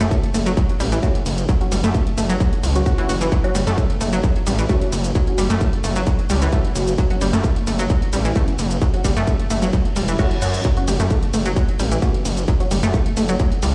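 Dark and industrial, this driving peak-time techno cut runs at a straight, relentless pace. An overdriven, distorted electronic kick sits up front from 0.1 seconds, alongside a gritty, aggressive synth bass with a sawtooth bite, oscillator sync and ring modulation, saturated and sustained beneath the groove. The techno drum kit layers hi-hat, ride cymbal and shaker, its hats warm and re-recorded in a large room, all pumping against the kick. An analog pluck riff, round and bright with detuned sawtooth shimmer, repeats through chorus and dub echo, while a muted, deep chord stab in the background moves through a phaser and delay, its notch filter evolving over time. A brief electronic reverse cymbal sounds in the background at 9.9 seconds, and the whole mix sounds as if played on a big sound system in a bare room, wrapped in large studio reverb.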